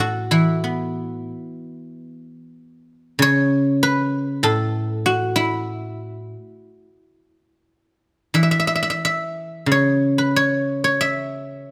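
A solo guzheng, played with fingerpicks, rings out silvery and up front in this flowing, elegant piece of Chinese traditional music, cut from a longer performance. Its free, rubato phrasing spans from low A2 to high E5 across the 11.7 seconds. Close, detailed microphones catch every plucked string, set in a light reverb.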